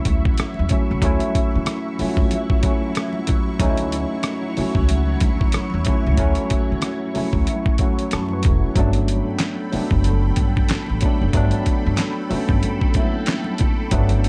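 A worn, slightly out-of-tune tine electric piano, lightly overdriven and up front, opens this relaxed, sensual neo-soul R&B excerpt at 93 BPM alongside a lush, detuned sawtooth pad that blooms slowly under chorus and phaser, with a dusty, gritty sampler-style drum kit (thumpy kick, snare, rim click, hi-hat and handclaps), a woody, dark pizzicato upright bass and faint, bright congas joining at 0.1 seconds. The groove swings its sixteenths over a Dmaj9 chord, and the electric piano plays a fill from 6.8 to 8.8 seconds before the harmony moves to Gmaj9. Vinyl crackle and light reverb lend the whole a vintage, intimate air.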